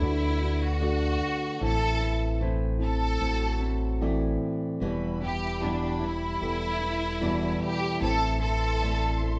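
In a straight 4/4, this heartbroken, longing pop ballad moves from D to Am, then to Em at 4.8 seconds and back to Am, in a passage cut from a longer piece. A bright, focused violin section carries the melody up front with lush vibrato, while a mellow, distant French horn section adds a very quiet second line with a roomy, classical-style tone. Clean tine electric piano and fingerpicked nylon-string guitar arpeggios, full-bodied and acoustic, fill out the accompaniment beneath them. A deep sub bass with octave sits prominently at the bottom, its sustained, sine-like tone giving the harmony a solid floor. At 4.8 seconds a dark, woody string section enters in the background with smooth sustained chords, and the whole band plays together in one room, bathed in a large, wet reverb.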